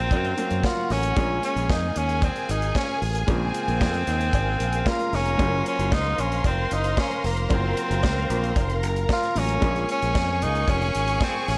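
A tenor saxophone carries the melody up front in this glamorous, danceable disco passage, its tone punchy with a light vibrato and a distant, roomy quality in a pop solo style. A fingered electric bass sits just as far forward, bright and growly with a direct sound. A modern acoustic drum kit joins at 0.1 s with hi-hat, a tight kick and a medium-tuned snare, while a dry cowbell adds a very quiet metallic accent until 11.3 s. Two bowed string sections, both lush with vibrato, stay in the background: one, clear and focused with a smooth top, plays a second line, and the other, woody and close, holds sustained chords. A clear baby grand piano adds accompaniment, also in the background, as the harmony moves between Gbmaj7 and Bbm7, all set in a studio reverb.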